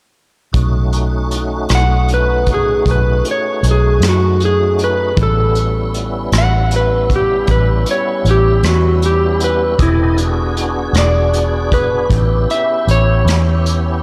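A dreamy, reverb-soaked mix carries this gritty, rollicking slow blues cut from a longer piece at 52 BPM in 12/8, where a full, clean tonewheel organ with chorus vibrato and slow rotary speaker holds sustained chords, a dark, round, foam-muted fingered electric bass sits punchy and up front, a vintage brush kit with tight kick, rim click and hi-hat has a pumping small-room sound and rolled-off top, and from 1.7 s a slightly broken-up electric slide guitar played with fingerpicks carries the melody with delay over changes moving from B7 to A7 to E7 and back to A7.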